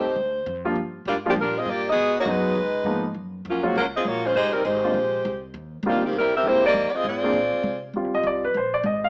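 A dark saxophone section with light vibrato and a soft attack carries the joyful, brassy big band swing melody up front, over a warm grand piano and a woody pizzicato upright bass, until the saxes stop at 7.8 seconds and the piano takes a brief solo from 7.9 seconds, all in a short clip with light reverb and a small-speaker sound.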